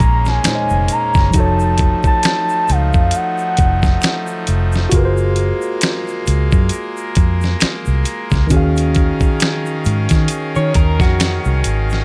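R&B with a neo-soul lean, this introspective, smooth excerpt moves at an unhurried pace with a swung sixteenth-note feel, cut from a longer piece. A gliding, sine-toned lead with chorus, vibrato and tape echo carries the melody only through the opening 4.5 seconds, its detuned, sustained voice sliding between notes over chords such as Bbm11 and F7b9b13. Beneath it, a worn, slightly out-of-tune tine electric piano plays clean, direct accompaniment, while a pipe organ's brassy trumpet stop holds bright, baroque-voiced chords with a touch of chiff. The foundation sits up front: a round, punchy foam-muted electric bass with a dark, amped tone, and a gritty, compressed sampler-style drum kit with a thumpy kick, fat snare, hi-hat and finger snaps. An egg shaker and group handclaps stay in the background in a small room, and at 10.6 seconds a dark, slightly broken-up electric guitar enters with a picked second line as the harmony settles on Ebm11.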